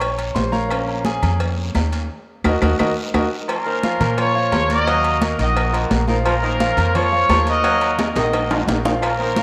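A punchy, vintage-toned trumpet section with vibrato and slapback echo bursts to the front at 3.5 seconds in this fiery, passionate salsa in Bb minor at 173 BPM, after a brilliant, long-sustaining concert grand piano leads the opening over a woody pizzicato upright bass, while a distant, roomy baritone saxophone adds a second line and a busy background of high-tuned congas, hard-handed cowbell and bongos, ringing agogo bells and timbales, close, dry claves and a raspy guiro drives it all, with drum fills and a band accent and an echo chamber reverb.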